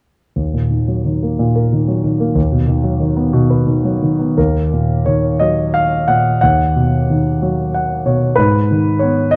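Set in a moderate scoring-stage reverb with a dark, warm production, this melancholic fragment of lyrical classical solo piano in Eb minor drifts at 60 BPM in a rubato 6/8 with uneven beats, its mellow, up-front concert grand spanning deep bass at Eb2 up to Gb5 over Ebm and B/D# harmonies, adding a short fill at 7.4 s before settling on Abm at 8.4 s.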